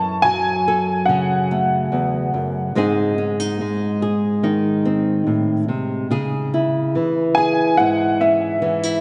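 A slightly detuned, woody upright piano with long sustain carries the melody in brief phrases from 0.0 to 2.3 seconds and again from 7.3 seconds, trailed by a diffuse ambient delay, above a small, fingerpicked nylon-string guitar that plays throughout this melancholic, intimate acoustic folk passage, its chords moving from F#m through G# to C#m inside a wet church reverb that leaves the dreamy mix with a muted top end.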